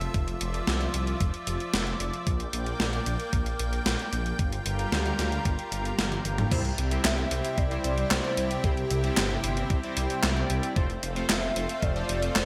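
A straight 4/4 pulse at 113 BPM drives this dreamy, uplifting synthwave excerpt, where a thumpy electronic kick and an up-front gated 80s digital drum machine with gated-reverb snare, handclaps, hi-hat, toms and crash support a thick detuned saw bass and a lush, bright unison pad pumping with sidechain through Dmadd9/F, Bb6 and Gm7, until a drum fill at 6.0 seconds opens onto C and F, where glossy chorused polysynth stabs with digital delay arrive at 6.5 seconds and a velvety, mellow synth lead with vibrato enters at 7.0 seconds, all set in a moderate plate reverb with bright 1980s-style digital sheen.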